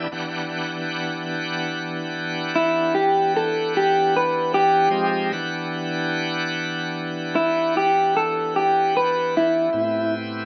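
A slow 12/8 pulse at 50 BPM carries this mournful, soulful blues fragment in E minor, where a slightly broken-up, lo-fi electric guitar through a small old amp picks an up-front melody while a bright, shouting tonewheel organ with key click, light overdrive and a slow rotary speaker holds full chords on Em7 before shifting to Am7 at 9.7 seconds, set in a dark production with moderate studio reverb.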